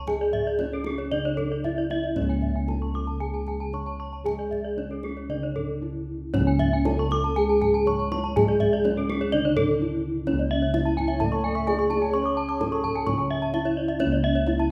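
A straight 4/4 pulse at 115-129 BPM drives this shimmering, brilliant Balinese gamelan passage in C# pelog, cut from a longer piece, where a mellow bronze metallophone melody struck with padded mallets rings over up-front, round bossed gongs carrying the bass and a soft kendang set distant in the background. Two layers of metallophone arpeggios glint above, one band-limited and vintage-toned, the other bright under horn mallets with paired-tuning beats, while a lower metallophone accompaniment joins at 2.2 seconds. Near the close a breathy bamboo xiao adds an unsteady second line with vibrato from 11.1 to 13.5 seconds, all bathed in a recital hall reverb.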